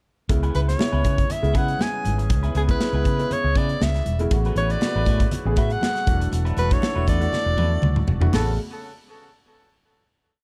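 A vibrato-laden, subtone soprano saxophone spins a motif-based jazz melody from 0.6 s over a breezy, urban 1980s jazz-funk pop groove at 119 BPM in A major, as a tight, crisp studio drum kit keeps a sixteenth-note groove, a round, foam-muted fingered bass plays an agile syncopated line, a clear grand piano adds syncopated chord stabs with subtle chorus, a twangy clean electric guitar picks a sixteenth-note riff in the background, very quiet hard-handed congas slap on two, and a distant horn section with digital delay holds swelling long notes from 1.3 s, in a dark, dry production that moves through a drum fill at 7.3 s to a final A69 chord.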